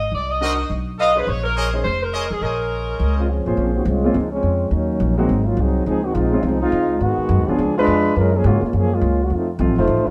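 Captured live in one room with a moderate stone-room reverb, this brassy, sultry big band swing excerpt in Bb minor at 209 BPM opens with a clear, vibrato-laden saxophone section carrying the melody over bright trumpet stabs, a woody pizzicato upright bass and an intimate grand piano whose action noise can be heard, before a close-miked trombone section with a warm vibrato takes over at 3.2 seconds and solos from 3.6 seconds to the end.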